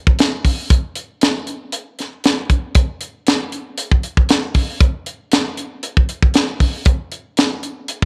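A lightly swung 16th-note groove in 4/4 at 117 BPM drives this mournful, smoky blues fragment, played from 0.1 s to 8.1 s by an acoustic funk drum kit alone: hi-hat, a tight kick and a high-tuned snare sit up front with a mid-forward, small-room sound under light reverb.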